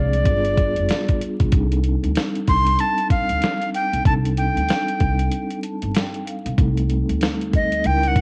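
Jazz-hop with a nocturnal, mellow feel, this excerpt moves at 95 BPM in C dorian with a swung sixteenth-note groove, as a breathy, bright flute carries the melody up front over soft-mallet vibraphone with fast motor vibrato and a woody, pizzicato upright bass, while a gritty, compressed sampler-style drum kit with a thumpy kick, snare and hi-hat sits forward from 0.1 seconds. The harmony moves from G7b9 to Cm69, and at 5.3 seconds a break opens for a vibraphone fill before the flute takes a solo from 6.6 seconds. Cassette tape colours the flute, vibraphone and drums, and the whole recording carries vinyl crackle, light reverb and small-room ambience.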